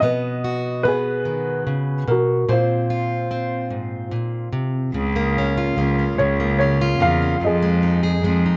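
A slow, straight 6/8 pulse at 49 BPM in dotted quarters carries this nostalgic, hopeful acoustic folk-pop ballad, where a dark, woody upright piano sings the melody with a slapback echo over an up-front fingerpicked, plugged-in steel-string acoustic guitar moving through B, Bbsus2, Db6 and Fm7, until a single bowed cello enters at 4.9 s with light vibrato and an earthy, smooth-topped bass line, all captured in a dry, close 1970s-style studio sound with light reverb.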